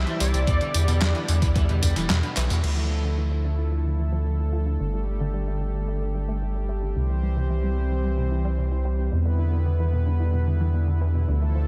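A straight 4/4 pulse at 111 BPM drives this nocturnal synthwave passage, cut from a longer piece, with a detuned 8-bit drum machine bringing crash, handclaps, hi-hat, snare and tambourine from 0.1 to 2.7 seconds, joined briefly by an overdriven, knocking electronic kick, before a drum fill and band accent land at 2.4 seconds. Underneath, a round, deep analog bass sits up front throughout, while a brassy, detuned sawtooth pad holds sustained chords with chorus and sidechain pumping, moving from Em7 through Dmadd9, Gsus2 and C back to Em7. A nasal analog pluck spins arpeggios in the background with chorus, phaser and tape echo, and a filter sweep shapes its sound from 2.6 seconds onward. At the very start a thick, wave-folded unison lead states a brief melody with vibrato, analog chorus, cassette-tape colour and slapback echo, shadowed by a barely audible, dreamy FM electric piano with a soft pad layer, and a raw, picked garage guitar adds an overdriven riff with lush chorus in the background. 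A moderate hall reverb gives the mix a big arena sound.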